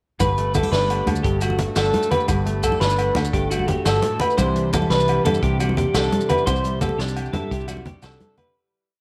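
A sunny, joyful highlife guitar band groove in 12/8 at 115 BPM opens at 0.2 s with the whole ensemble together, settled in G major and moving from a Gsus2 chord to Cadd9 at 4.4 s. Up front, a clean electric guitar repeats a picked arpeggio ostinato, colored by analog chorus and slapback echo. Beneath it, a bright, full-bodied steel-string acoustic guitar rolls out fingerpicked arpeggios with fresh strings and audible finger squeak, while a dark, round, foam-muted fingered electric bass plays a dotted figure in the low register. A vintage drum kit with a punchy kick, medium-tuned snare, hi-hat and a rolled-off top carries the 12/8 feel, joined by hard-handed, thick-skinned congas, a ringing agogo bell time line on its low bell, and grainy, mellow maracas tucked in the background. A moderate echo chamber reverb and small room ambience surround the band, and the piece fades out from 6.5 s to 8.6 s.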